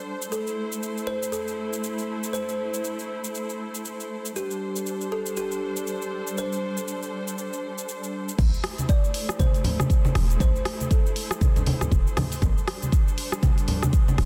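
Afro house with an earthy feel, this excerpt opens on veiled, muted strings holding sidechain-pumped chords under a woody, ringing kalimba melody with tape echo and a deep house kit of dark hats, cabasa, rim click and crash, until the drop at 8.4 seconds brings in a deep, up-front kick, hard-handed bright congas and a boomy 808-style bass sitting in the background, all in a small room with light reverb and a dense, heavily limited master.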